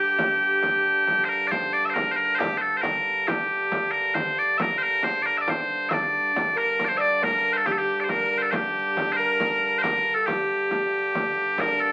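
A medieval dance in G minor at 137 BPM and a straight 3/4, this short excerpt from a longer piece carries an ancient, mysterious mood. Loud bagpipes take the melody up front, their tone bright, piercing and continuous as they hold a solo line from start to finish. A tenor recorder adds a second line with an airy, woody sound, vibrato and a crisp, chiffy attack, sounding briefly at the opening, dropping out at 0.8 seconds and returning at 6.6 seconds. Underneath, a pedal harmonium sustains a low, reedy drone that seems to breathe in a boxy small room, while a frame drum, close and dry, keeps the dance moving. The whole is bathed in wet studio reverb and heard through the crackle of a very old 78 rpm record, lending it a faded, time-worn quality.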